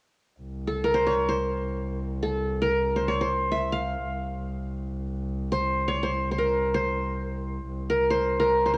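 Unfolding in free time, this short passage from a longer makam ensemble piece carries a passionate, stately mood, tuned to A4 = 444 Hz. A bowed double bass enters at 0.4 seconds, holding a low drone on C2 with light vibrato; its tone is earthy with a smooth top, and a cassette tape effect colors its sound. At 0.7 seconds the qanun takes up the melody, its plectrum-plucked triple strings bright-edged and ringing between A4-40c and F5, sitting louder than the bass. Both instruments are up front, the bass played by a single player, and they continue together until 8.8 seconds. A lush hall reverb with a 2.6-second decay surrounds them, and the whole was captured as a home recording on cassette.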